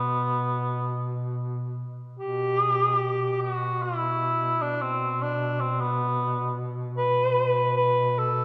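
Longing and mournful, this short excerpt of a Caucasian folk lament moves in a free, rubato triple metre. A mellow cor anglais carries the classical-style melody between B3 and B4 with light vibrato and a slapback echo, while a warm duduk sustains a soft-attack folk drone on B2 beneath it, both playing throughout. A wet church reverb surrounds the pair, lending the cor anglais a distant, roomy sound, and the opening passage gives way to a new section at 2.2 seconds.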